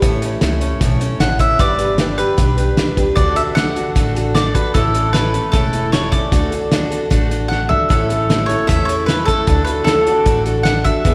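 Drenched in the long, wet reverb of a church or concert hall, this easygoing, nostalgic honky-tonk and classic country passage rides on a cloth-damped, thuddy drum kit with a fat snare and a tight kick, its lo-fi, gritty, muffled sound sitting up front, while a woody, thumpy upright bass plucked on gut strings and a bright, boxy picked archtop guitar carry the accompaniment. A warm, double-strung mandolin enters at 1.2 seconds with the melody, close and present. After a drum fill, a clean, twangy pedal steel guitar slips in at 7.9 seconds with fingerpicked sustained chords and volume swells, far in the background.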